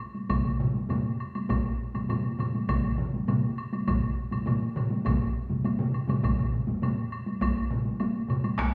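Powerful and driving, this Japanese traditional taiko ensemble piece moves in a straight 4/4 feel, heard as a short cut from a longer performance. A close, woody woodblock opens at 0.0 seconds and sits low in the mix, with the first solo taiko drum entering almost immediately at 0.1 seconds. A second solo taiko drum and two taiko ensemble parts join at 0.3 seconds, and every part carries on together to the end. The solo taiko drums, struck with hard sticks, are compressed and saturated, and one of them stands up front with a forceful presence. One taiko ensemble part shares that dense, saturated character, while the other sounds close yet sits in the background. The whole ensemble rings in a reverberant recital-hall space with a touch of small-room ambience, giving the thunderous drumming a resonant, churchlike bloom.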